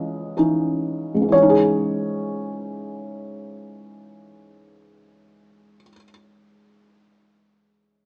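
A felt-muted upright piano carries this short fragment of a lyrical classical solo piece, sitting up front with a soft, dark tone and short sustain from its thick felt. Set in C# minor and played in free time, the music feels brooding and bittersweet, opening on a C#madd9 chord. The opening gesture slows down over its first 1.3 seconds before a new passage unfolds until 7.0 seconds, and the piano plays on until 8.1 seconds. The part ranges from C#2 to D#5, its mellow voice heard close and intimate. Light reverb surrounds it, and the overall sound has the modest character of a small speaker.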